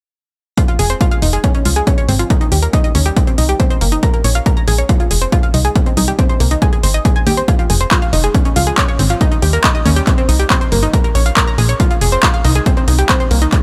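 Uplifting trance with a soaring, euphoric mood, this excerpt is built on an up-front, punchy analog kick and an overdriven, layered techno kit of handclaps and hi-hats with sidechain-pumped hats, a funky, wave-folded bass pluck pumping underneath, and a round, bright analog pluck playing chorused, delayed arpeggios through a filter sweep over a minor-key progression in a digital ambience.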